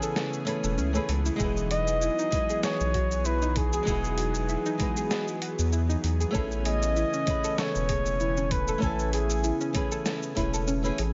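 A breathy, mellow flugelhorn carries the solo melody in a jazz style, with light vibrato and delay trailing its lines until it drops out at 9.7 seconds. This blissful, relaxed sunset chillout fragment is cut from a longer piece, with a swing feel on the sixteenths and harmony that moves from Amaj9 to Emaj9 and back. Beneath the horn, an acoustic flamenco guitar is fingerpicked through delay, and a lush, detuned unison pad holds bright sustained chords with chorus. A soft, round pluck adds dark arpeggios roughened by vintage 12-bit sampler grit. A dusty soul sampler-style kit of hi-hat, shaker and medium-tuned snare sounds gritty, compressed and tape-warm, and a thumpy electronic kick joins it at 1.4 seconds. A deep analog bass enters at 0.6 seconds and sits up front, while a subtle reverb and a softened top end keep the mix hazy.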